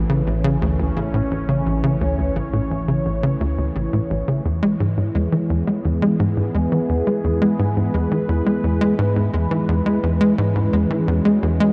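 A tight, punchy sequencer bass riff drives this short cut from a longer piece of ambient space music at 86 BPM in a straight 4/4. The tone is sawtooth and square with a filter pluck, decaying and mellow up front, and it carries a subtle chorus and tape echo. Above it, a phased analog pad holds sustained chords, swirling and detuned, with a slow attack and long release under its phaser and chorus. A round, deep analog bass hums in the background on a low A, a wave-folded blend of square and sine, until it stops at 4.4 s. The harmony moves from Asus2 to E at 4.5 s, opening a second section that lasts to 11.7 s. A huge reverb and dark production give the whole an expansive, cosmic mood.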